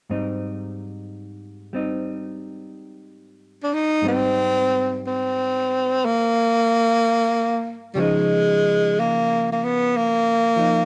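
A slow 4/4 swing at 61 BPM sets the unhurried pace for this tender, late-night jazz ballad in Ab major, tuned slightly flat with A4 at 435 Hz. An electric hollow-body jazz guitar opens alone at 0.1 s on an Abmaj7 chord, its dark, clean, fingered accompaniment sitting well back in the mix. At 3.6 s a breathy tenor saxophone enters up front with the solo melody, its subtone delivery shaded by light vibrato and scooped notes in a jazz style. The harmony shifts to Dbadd9 at 8.0 s as the saxophone carries the line over the guitar. Light reverb and close, detailed microphones keep the horn's breath and the guitar's tone intimate in this short passage cut from a longer piece.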